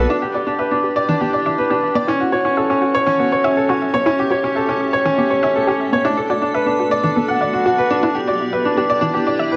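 Piano and strings electronica at 121 BPM in 4/4 with a straight feel, this short cut from a longer piece sits in E dorian, tuned to A4 = 438 Hz, and carries a hypnotic, moving mood. A bright upright piano sits up front, playing a riff between C#4 and F#5 with a woody, intimate tone, long sustain and audible action noise, touched by digital delay. Beneath it, a lush, punchy unison pluck of detuned sawtooth with a noise layer and ring modulation plays decaying arpeggios from E3 to E5 in the background, also through digital delay. A cloudy granular pad holds sustained chords from A3 to A5, blurred and evolving with a slow attack and its own built-in reverb, and it fades in across the passage from 0.1 to 9.6 seconds. The chords move from Em7 through F#m7, A7 and Bm7 before returning to Em7, all set in a moderate concert hall reverb with a 1.8-second decay and a digital ambience.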